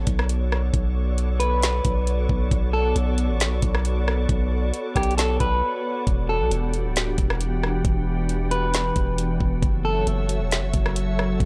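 The recording sounds dry and gritty, a hardware-captured mix set in a digital ambience, and this short cut from a longer atmospheric cloud-rap piece moves at 135 BPM in 4/4 with a half-time feel in B minor, carrying a melancholic, spacious mood. A glassy FM pad holds sustained chords throughout, its ethereal, ring-modulated tone softened by ensemble chorus and its own reverb while sidechain pumping makes it breathe under the beat. Beneath it, a long 808-style bass sits up front with a deep, sine-like body, and an electronic R&B drum kit enters at 0.1 seconds with a knocking kick, woody snare, metallic hats and rim clicks, re-recorded in a small room. At 1.4 seconds a dark electric guitar at the edge of break-up carries the melody in a narrow upper register, fingered and bathed in spring reverb and analog delay, until it stops at 10.1 seconds. After a brief break around 5.6 seconds, the harmony moves from Bm7 to Em7 and then to F#m7 near the close.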